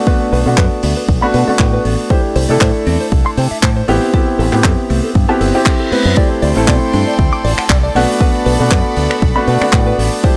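An up-front, overdriven electronic kick punches through this sensual, sleek nu-disco excerpt at 118 BPM, joined by a baby grand piano with tape echo, a punchy envelope-filtered fingered bass with tube saturation, a bright, clean electric guitar riff sitting in the background, and a dry, damped 70s kit of finger snaps, handclaps and hi-hat, while a reverse cymbal at 5.5 seconds ushers in a reedy chamber string section with gut-string tone, 12-bit sampler grit and sidechain pumping at 6.2 seconds, all in a gritty hardware recording with little reverb.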